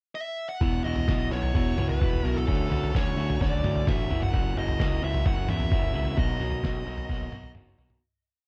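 Indie rock at 130 BPM in a straight 4/4, carefree and jangly, this short piece opens with a bluesy lead guitar at 0.2 s playing motif-based call phrases, distorted and set in plate reverb and tape echo. At 0.6 s a lo-fi rhythm guitar through a small old amp enters with slightly broken-up, driving eighth-note open chords, joined by a growling, bright, overdriven picked bass and a muffled, pitched-down sampler-style kit with a thumpy kick, medium-tuned snare and grooving toms. The chords move from Esus2 through Dmaj7 and F#7 to Bmaj7 in a dark, warm production with little reverb, and a fade-out begins at 6.2 s before a brief closing break.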